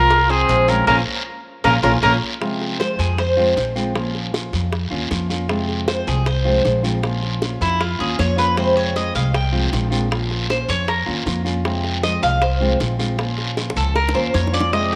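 A straight 4/4 pulse at 156 BPM drives this nostalgic, sultry Cuban son and guajira passage in F minor, cut from a longer piece, where a punchy vintage trumpet with vibrato leads over a breathy, reedy flute in the background until about 2.1 seconds, with both joining a band accent, before the mellow, metallic, double-strung tres steps up front for a picked solo from 2.4 seconds. The solo rides over dark fingerpicked nylon-string guitar with audible finger squeak, a woody, thumpy pizzicato upright bass, tight high-tuned cowbell and bongos, and a raspy guiro, with a drum fill arriving at 13.6 seconds, all swaying between Fm and Bbm in a small room with moderate echo-chamber reverb.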